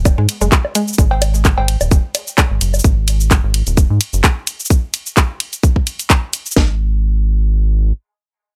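A dry, close recording captures this short, quirky slice of minimal techno, running at 129 BPM in 4/4 with a light swing on the sixteenths and a sparse, drop-driven feel. A rubbery, hollow square-wave bass sits up front, its dark, nasal tone shaped by a resonant filter pluck and a moving notch, and it pumps against the sidechain from the start through 7.9 seconds. The electronic garage kit is equally forward and tape-tinged, with a tight kick and cracking snare leading a layered bed of cabasa, handclaps, hi-hat and ride cymbal, all touched by small room reverb. Analog-flavoured woodblock and cowbell add odd little accents through the opening stretch, dressed in the same small room and a digital delay. A woody, round mallet-like synth pluck makes a single bright appearance on G#3 early on, glazed with chorus, phaser and dub echo while pumping with the sidechain. After the drums drop out around 6.7 seconds, the bouncy bass carries the closing moments of this cut from a longer piece.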